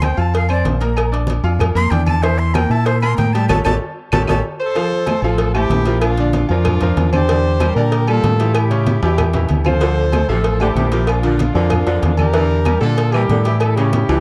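This short, fiery salsa excerpt has a dark production with light reverb, and it moves at a danceable 190 BPM in 4/4, cycling through a minor progression that keeps landing on A7. A breathy, chiffy jazz flute opens with a solo over the band, and a band accent and drum fill close the phrase before the flute drops out at 4.4 seconds. At 4.6 seconds a punchy horn section takes over the melody up front, and a clear saxophone section with vibrato joins underneath as a second line at 9.8 seconds, just after another drum fill. Throughout, a brilliant concert grand piano with deep bass and short sustain supplies the accompaniment, while a round, dark fingered electric bass sits prominently up front. Behind them, thin-skinned congas, a low-tuned cowbell, distant ringing agogo bells and timbales, and woody, band-limited vintage claves fill out the percussion.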